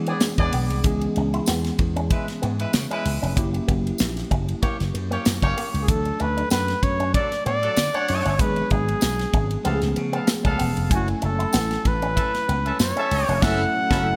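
A swung 95 BPM groove in 4/4 drives this bittersweet, slick slice of polished 1980s jazz-funk pop in F# minor, where a tight, up-front studio kit, punchy slap bass, a worn, slightly out-of-tune tine electric piano with overdrive and chorus, a clear horn section, a twangy envelope-filtered guitar with chorus and a jingly tambourine set the bed before a close-miked flugelhorn with vibrato takes the melody at 5.8 seconds, all under bright digital production with light reverb and a drum fill with a band accent at 13.4 seconds.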